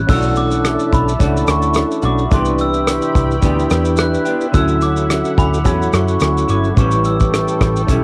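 A ringing, bell-like glockenspiel struck with hard plastic mallets carries the melody over a clean semi-hollow electric guitar with warbly pitch drift, a dark, round, foam-muted electric bass, a mellow, flute-like tonewheel organ turning through a slow rotary speaker, a smooth, detuned sawtooth pad in the background and an up-front soft brush drum kit with shaker and rim click, giving this hazy, laid-back bedroom pop excerpt at 108 BPM a lightly swung feel and a cassette home-recording character as it moves through Bm11, Cmaj9, Dmaj9 and A7.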